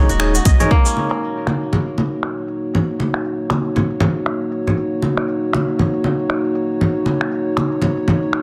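A dark, detuned analog pad sits up front with sustained, chorused chords and sidechain pumping through this spiritual, warm afro house passage with a swung feel, while ringing fingerpicked kora arpeggios with delay, gritty overdriven tine electric piano stabs in the background, a boomy 808-style bass, a grainy tube shaker and a deep, tape-warm electronic kick all drop out by 2.6 s, leaving bright, hard-handed congas up front and an electronic afro-pop kit of crisp hats, finger snaps and crash cymbal under a moderate plate reverb on a dense, heavily limited master.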